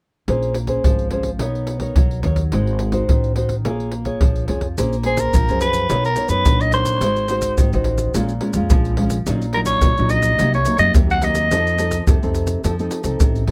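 A lively, nostalgic blend of samba and choro in Bb minor, moving at 107 BPM in a straight 4/4, this excerpt from a longer piece opens with nylon-string guitar, upright bass and a percussion group of surdo, pandeiro and maracas all starting together at 0.3 seconds. The guitar sits up front with a full-bodied, classical sound, its fresh strings thumb-plucked as it carries the accompaniment through chords such as Bbm9, Bmaj9 and Ab7. Beneath it, the pizzicato upright bass offers a woody low end on steel strings, while the tight surdo and hard-handed pandeiro and maracas sound close and dry. At 5.1 seconds a growling soprano saxophone takes the solo melody, raspy and gritty with vibrato and scooped notes in a vintage jazz style, playing until 12.1 seconds as the harmony moves through Ebm7/Bb, Cm7b5 and F7. The recording is intimate and detailed, with close microphones and little reverb.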